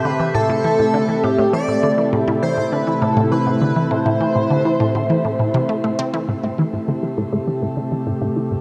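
Mysterious and expansive, this short excerpt of sequencer-driven space music rests on an Am7 chord in a straight 4/4, bathed in a wet spring reverb and heavy echo. A morphing, warbling wavetable pad holds mellow sustained chords up front, while a juicy, squelchy blip pluck repeats a bright, resonant riff through phaser, shimmer reverb and analog delay, and a shimmering, retro pulse-width lead with chorus and vibrato carries the melody until 6.0 s. A very quiet, tempo-synced gated texture pulses high above until 6.3 s, when a filter sweep on the synth arpeggio sound opens the closing section.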